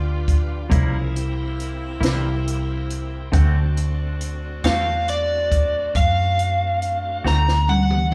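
Laid-back and rollicking, this slow blues excerpt moves at 46 BPM in a straight 12/8, passing from G7 to C7 and on to D7. A round, foam-muted electric bass sits up front with dark, punchy low notes. A compact cocktail drum kit joins at 0.3 seconds, its tight booth sound giving a high-tuned snare and punchy kick along with hi-hat and toms, and it closes with a fill from 7.2 seconds. A bright horn section holds jazz-style sustained chords with light vibrato, while a shouting tonewheel organ adds its own chords through overdrive, chorus vibrato, key click and a slow rotary speaker. A clean, compressed semi-hollow guitar picks accompaniment with harmonic tremolo, and at 4.7 seconds an overdriven slide guitar, played with fingerpicks, takes the melody high and up front. Light reverb places the band together in one room, as if playing live.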